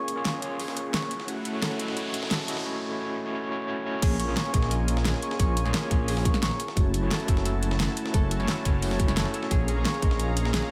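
An overdriven, barky tine electric piano with fast tremolo and digital delay opens this rolling, lush liquid drum and bass excerpt at 175 BPM together with a smooth, chorused analog pad pumping in the background and a ringing, low-pass-filtered concert harp playing arpeggios. A gritty, pitched-up breakbeat kit and a pop drum kit with a fat snare and metallic hats join moments later. An electronic riser sounds from 0.6 s to 2.7 s ahead of a brief break, and the drop at 4.0 s brings in a deep, rumbling detuned saw bass and a tight, up-front electronic kick over Bbm7 and Gbm7 chords, all set in light digital ambience.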